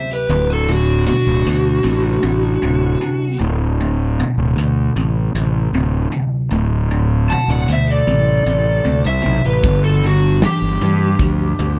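Gritty and driving, this short cut from a longer blues rock and southern rock track moves at 77 BPM in a straight 4/4, sitting in D mixolydian. An overdriven slide guitar carries the melody up front with a dark, fingered tone, while a biting lead guitar, picked and sitting lower in the mix, traces a second line beneath it. Down in the low register, a double-tracked rhythm guitar with a warm, picked sound and a phaser plays the riff over a D chord. At 0.3 s a growly, fuzz-laden fingered bass joins it, bright, direct and amped at the front. At 9.6 s the harmony shifts to G5 and a huge arena drum kit enters with hi-hat, a punchy kick and a medium-tuned snare, its hall sound pumping the room, all wrapped in a small room ambience.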